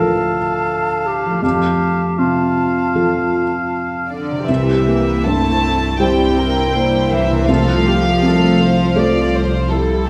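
This cinematic excerpt in F major opens with a bright oboe, a clear, roomy clarinet and an airy silver flute holding second lines over a felt-muted upright piano, whose soft, intimate tone carries audible action noise, while a mellow concert harp rings with fingerpicked arpeggios in the background. The mood is tender and hopeful, unfolding at a rubato 80 BPM in 4/4, with the chords passing from Dm to F, then C and F/C, in a tuning set to A4 = 441 Hz. After the woodwinds fall away, a symphonic violin section takes the melody at 4.1 s with a pure, floating sul tasto sound, while a rich cello section in the background carries the bass. Soon a dark, woody viola section with vibrato and a lush, smooth top joins the accompaniment, and a distant double bass section anchors the low end on C2. From 6.0 s a second bowed violin section adds another line, and a wet scoring stage reverb sets the whole ensemble further back in the room.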